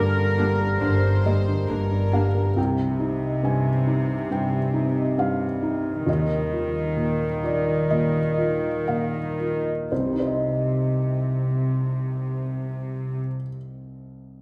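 In a free, rubato 4/4 that slows from 0.8 s to 9.9 s, this bittersweet, sorrowful film-score fragment opens with a brief full chord in which a bowed violin section carries the melody, a distant second violin section and a roomy oboe share a second line, a very quiet viola section accompanies, a mellow horn section holds sustained chords, and a dark, woody double bass section sits underneath. By 2.6 s most of these fall away, leaving a felt-muted upright piano, soft, intimate and vintage and up front, to carry the accompaniment with a ringing, thumb-plucked concert harp playing arpeggios in the background and a pure, floating cello section on the bass line. The chords move from minor shades into a gentle added-ninth colour before returning home, all bathed in moderate scoring-stage reverb until the piano stops at 14.4 s.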